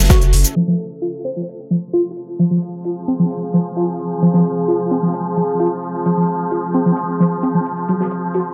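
An overdriven synth lead sits up front in this hypnotic, dark stretch of driving peak-time techno at 131 BPM in F minor, its gritty, guitar-like, screaming sawtooth and pulse-wave tone carrying a riff from 0.1 seconds onward, coloured by subtle chorus, cassette tape saturation, analog delay, vibrato and a filter sweep that runs from 0.6 seconds. Beneath it, a deep, moody ambient pad built from detuned sawtooth and sine voices with a sub octave swells in slowly, washed in chorus and reverb and breathing with sidechain pumping. A swarming drone on F joins at 2.1 seconds, tense and evolving, its bright granular texture also pumping against the beat. The rhythm comes from a crisp, airy acoustic kit of hi-hat and medium-tuned snare, tightly filtered and trailed by dub echo, with a brief burst of smooth electronic hi-hat and shaker at the very start. The harmony moves from G-flat minor to F minor and back to G-flat minor near the end. 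A moderate spring reverb, generous echo and a low-pass filter give the whole track a dark, echo-heavy feel.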